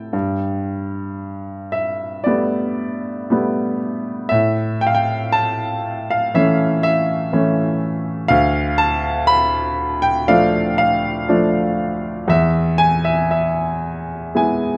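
Classical solo piano in a lyrical, melancholic vein, this short excerpt from a longer piece moves at a slow 59 BPM in 4/4 with a flexible, rubato feel. A clear grand piano plays alone from start to finish, spanning D2 to B5, its tone present and up front under close, detailed microphones with light reverb. The wistful harmony drifts from Gadd9 through A and Dm before settling on E at 12.3 seconds.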